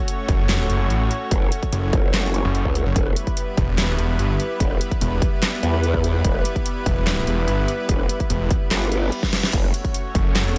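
A snarling, detuned sawtooth bass and a wobbling, formant-filtered growl bass, entering at 1.3 seconds, dominate this menacing, chaotic half-time heavy wobble dubstep excerpt, driven by a punchy overdriven electronic kick and an up-front kit with a deep snare, handclaps, hi-hat, rim click and crash, while a lush chorused pad pumps beneath and a faint reverse cymbal leads into a drum fill at 9.2 seconds, all in a dry, close sound.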